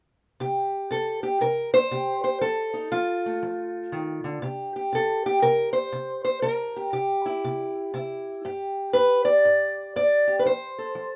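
A short, wet booth ambience surrounds this swaggering, gritty acoustic country blues fragment in C mixolydian at 119 BPM with a swung 4/4 feel, where a lone up-front fingerpicked steel-string parlour guitar, dark and boxy in tone, plays from 0.4 to 11.2 seconds over C5, F7 and C7 changes, drops its harmony briefly at 8.4 seconds, and lands on F at 10.5 seconds.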